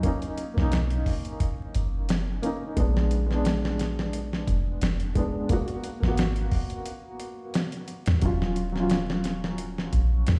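Soft, round 808-style bass enters at 0.6 seconds beneath a gritty, thumpy sampler-style soul drum kit and a felt-muted upright piano with tremolo and tape echo, carrying this smoky, cinematic trip hop excerpt in Eb minor at 88 BPM with a lightly swung 16th feel, moving through Bmaj9, Bb7b9, Abm9 and Ebm7 chords with a break from 6.9 to 8.2 seconds, all set in a large, reverberant room under vinyl crackle.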